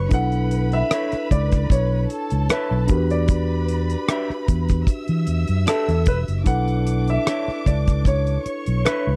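A present grand piano with long sustain carries the melody in this silky, smooth 1970s-style soul excerpt in B minor at 76 BPM, over a dry, airy, up-front drum kit with a tight kick and a round, punchy fingered electric bass, while a barky, bright tine electric piano comps, a lush bowed string section with vibrato and portamento sings a second line, and from 0.9 seconds a twangy, slightly broken-up electric guitar picks a riff through spring reverb, all moving from Bm11 to Em7 and back in a close, dry studio sound.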